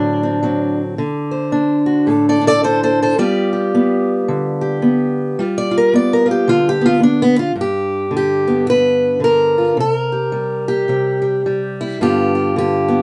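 Acoustic country blues with a swaggering, laid-back mood, this short excerpt cut from a longer piece moves at 109 BPM in 4/4 with a swung eighth-note feel, centred in G mixolydian and tuned slightly below standard pitch. A lone fingerpicked steel-string acoustic guitar carries everything, sitting up front with a boxy, parlour-sized tone and audible finger squeak, ranging from G2 up to D5. The harmony opens on D7 and moves to G7 at 3.2 seconds. After 7.6 seconds the music shifts into a new section that settles on G before touching C5 and returning to G7 near the close. The sound is roomy, with light reverb, a live-in-one-room character and a mellow top end.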